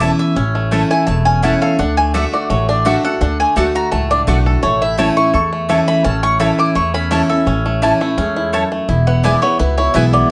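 A brisk, straight 4/4 pulse at 169 BPM drives this joyful, lively bluegrass passage in A major, cut from a longer piece and moving from A to D, back to A and on to E. A mellow, woody mandolin carries the melody over a second, rounder mandolin playing stabs, while a bright picked steel-string acoustic guitar supplies accompaniment and a thumpy, up-front pizzicato upright bass holds down the low end. A twangy, percussive banjo played with fingerpicks joins with arpeggios at 0.4 s, and a moderate studio reverb gives the band a natural sense of space.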